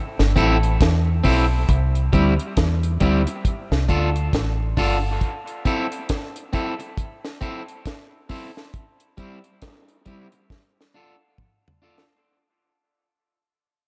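Dub reggae at 68 BPM in A minor with a swung, deep and hypnotic feel, this fading fragment pairs a round, punchy, foam-muted fingered bass that drops out at 5.2 s with a dry, dark drum kit of high-tuned snare and tight kick, while a twangy, slightly broken-up electric guitar with dub echo carries on over Am, C and Dm through the break to a drum fill at 10.5 s, framed by light reverb and small-room ambience.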